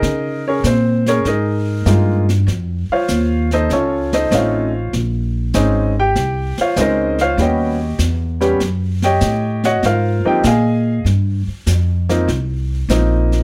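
A 98 BPM swing in 4/4 carries this short jazz piano trio fragment in Ab major, cut from a longer piece and sounding swinging and sophisticated. A clear baby grand piano sits up front with the melody across the whole 13.4 seconds, ranging from F3 up to Ab5. Beside it, a pizzicato upright bass with steel strings gives a woody, growly, bright low line from Ab1 to Db3, also placed up front. A jazz brush drum kit, played with brushes on a medium-tuned snare along with hi-hat, sits further back in a studio room. The harmony moves from Dbsus2 through F7b13, Bbm11 and Eb7alt before settling on Ab69 at 9.8 seconds, all wrapped in light reverb.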